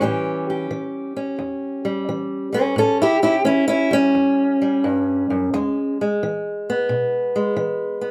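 A boxy, woody acoustic guitar sits up front in a moderately reverberant studio room, heard in a brief cut from a longer piece of acoustic country blues. Fingerpicked on an old ladder-braced guitar with aged strings, the solo part has a rollicking, gritty mood at 88 BPM in 4/4 with swung eighths, ranging from E2 to A4. It rests on an A7 chord before moving to E at 5.5 seconds.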